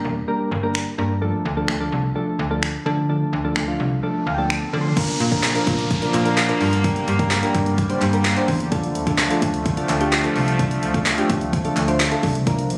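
Bittersweet and driving, this excerpt of dance-pop at 128 BPM in D minor opens with mellow, round electric-piano-like synth keys and a snappy, metallic FM slap bass, both pumping with sidechain, before a deep house drum kit with a deep kick, woody snare, dark hats, finger snaps and crash enters at 0.8 seconds. A riser and a keys fill lead into the second section at 5.0 seconds, with a downlifter following. There, a bright, detuned sawtooth pad with a slow attack and filter swell sustains chords over Bb, Gm and Dm, while a hollow group handclap sits in the background. The sound is up front and compressed, with light studio reverb and the character of a phone recording in the room.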